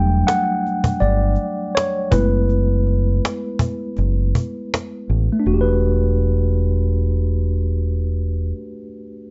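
A light reverb and a soft, dulled top end give this short lo-fi hip hop clip from a longer piece a reflective, nostalgic haze. At 81 BPM in 4/4 with a gentle swing on the sixteenths, it sits in E minor. A mellow tine electric piano, clean and up front with a plate reverb, carries the lead for the first 5.5 seconds. It moves from a rootless Em11 to F#m11 at 2.1 seconds, then settles back on Em11 in the second passage. A deep dub fingered electric bass, dark and round, holds the low register close in the mix, while a close, dry cajon adds snappy hand hits with rattling snares from 0.3 to 4.9 seconds.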